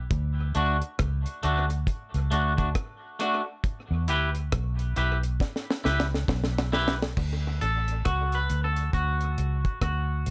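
Roots reggae at a relaxed 68 BPM in D major, this cut from a longer piece carries a laid-back, warm mood with a gently swung sixteenth-note feel. A vintage muted fingered electric bass sits up front with a dark, round, punchy, foam-muted tone, holding the low end from the very start. The deep reggae drum kit is dry and smooth, pairing a high-tuned snare and tight kick with rim clicks, hi-hat and crash, all softened by a rolled-off top and trailed by dub echo. A twangy, clean electric guitar, fingered and placed close, supplies the accompaniment through tape echo and plate reverb, and a clean electric guitar solo arrives at 7.2 seconds after a drum fill that begins at 5.4 seconds. The harmony moves between D and E minor before settling back on D, all within a light, gently reverberant room.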